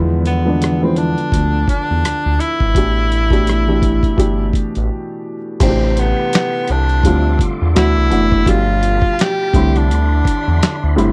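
A dry, close 1970s-style studio sound frames this relaxed, sensual neo-soul R&B excerpt at 84 BPM with a gentle swing, where a dark, woody upright piano and a smooth, up-front synth bass carry the chords beneath a gritty, thumpy sampler-style drum kit with handclaps and rim clicks, a distant tenor saxophone sings a lightly vibratoed solo line through slapback echo, and after a short break at 4.9 seconds a lightly overdriven tonewheel organ with slow rotary speaker and key click slips in behind at 5.6 seconds.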